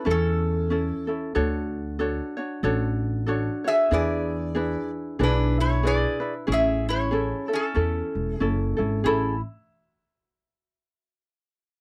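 A lightly swung 4/4 at 94 BPM sets an unhurried, languid Hawaiian groove in A major, moving through A, Dmaj7, E7 and Amaj7 in this short excerpt from a longer piece. Up front, a metal-body resonator slide guitar played with fingerpicks carries the melody with a bright, metallic, nasal tone, while a light, fingerpicked ukulele supplies acoustic accompaniment. A pizzicato upright bass with steel strings enters at 0.1 seconds, giving a woody, dark foundation, all captured in a dry, close 1970s-style studio sound.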